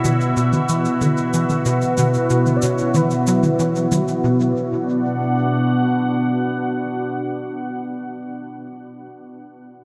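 Hypnotic and cosmic, this short cut from a longer piece of ambient, sequencer-driven space music moves at 93 BPM in B minor, drifting through a dreamy mix soaked in a huge reverb. An evolving wavetable pad sits up front with sustained chords, its detuned, warbling vintage tone morphing under phaser and its own reverb, and it carries on alone once the other parts have fallen away by 4.5 seconds. Beneath it, a tight sawtooth-and-square sequencer bass drives a punchy, filter-plucked riff through ensemble chorus and delay. Electronic toms and cabasa add analog, tape-warm percussion with a small-room character, echoed by delay. From 1.7 to 3.6 seconds, a soft, round, octave-layered synth lead sings a brief, dark melody in the background, shaded by chorus, phaser, vibrato and delay. The harmony moves from B5 to B minor as the opening section gives way to the next at 4.2 seconds.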